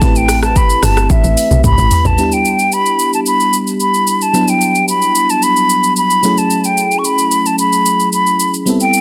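Amapiano at 111 BPM in a straight 4/4, soulful and late-night, cut from a longer piece: a pure, hollow concert flute with vibrato and digital delay carries the melody over a glassy, bell-like FM electric piano with chorus, the chords moving from Am9 to Em9 at 2.2 seconds and F#m9 at 6.2 seconds. A deep, round log drum bass with a dark, percussive attack plays only through the opening drop until 2.2 seconds, as a drum fill on the electronic afro-pop kit (deep kick, warm hats, rim click, shaker and toms) closes that passage. The dense, heavily limited modern master sits in light reverb, with the close-miked flute, the piano and the drums up front.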